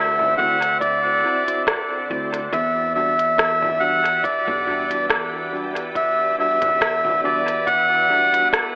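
Meditative and hazy, this short ambient dub fragment, cut from a longer piece, drifts at 70 BPM in 4/4 with a light swing on the sixteenths, moving from D7 to Em7 in E minor. A reedy, breathy melodica sits up front carrying the melody, its nasal tone trailing dub echoes. Behind it, a soft organ-like pad of detuned sine tones holds calm, slow-blooming chords with ensemble chorus and its own reverb, while a mellow tine electric piano adds clean stabs from 0.4 seconds, also sent into dub echo. A woody, thumpy pizzicato upright bass anchors the low end, and an overdriven electronic drum kit with crisp hats, rim clicks and toms enters at 0.2 seconds, echoing through a large room, joined at 0.8 seconds by a deep, layered kick tucked into the background. The whole mix is soaked in a wet spring reverb and heavy echo, filtered to a narrow telephone-like sound that deepens the haze.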